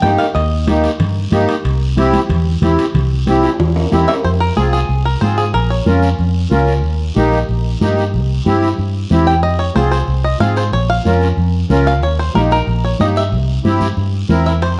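A fiery, danceable cumbia opens with the full band at once: a round, foam-muted electric bass sits up front, a reedy, sweet accordion with light tremolo tuning carries the accompaniment, and a twangy, fingerpicked bluegrass banjo states a short melodic phrase before dropping out after 1.0 seconds. Bright, damped congas played with soft hands stay in the background, while a raspy guiro scrapes along quietly and ringing metal-shell timbales drive the opening, closing it with a fill that lands at 4.2 seconds. From there the timbales fall away and the harmony settles into a cycling minor progression of Fm, Bbm, Eb and C, turning to C7 near the end. The percussive banjo returns at 4.1 seconds and takes the lead again in the later stretch, riding over the airy accordion and the electric bass. The dark production places everything in a moderate large-studio reverb, and the piece is cut from a longer work.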